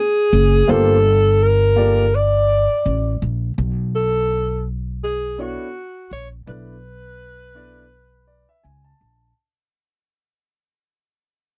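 A breathy alto saxophone leads this smoky, cool jazz-hop fragment, playing a jazz-style solo line with vibrato and scooped notes that sits up front yet carries a roomy, distant quality. An upright bass enters at 0.3 seconds with a woody, thumpy pizzicato tone from gut strings, also placed up front. A dark baby grand piano follows, adding mellow, vintage accompaniment with long sustain over a Gm9 chord that moves to Bm11. The groove swings its sixteenths in a hip hop feel, and the whole passage is fading out as it is cut from a longer piece. The saxophone stops at 8.6 seconds while the piano plays a closing fill from 7.9 seconds, all captured in a dry, close, 1970s-style studio sound.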